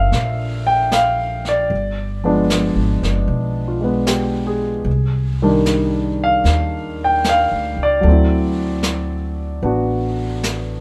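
An intimate concert grand piano sits up front, its audible action noise and deep bass giving this wistful, melancholic jazz ballad a close, natural feel as it plays accompaniment in a swung 4/4 over chords moving from Gm7 through G7b9 and Cm9 to D9. A woody pizzicato upright bass with steel strings holds the low end, and from 0.1 s a vintage brush drum kit, mid-forward with a rolled-off top and a medium-tuned snare, adds brushed snare and hi-hat from a small room. Light reverb softens the whole passage, which is cut from a longer piece.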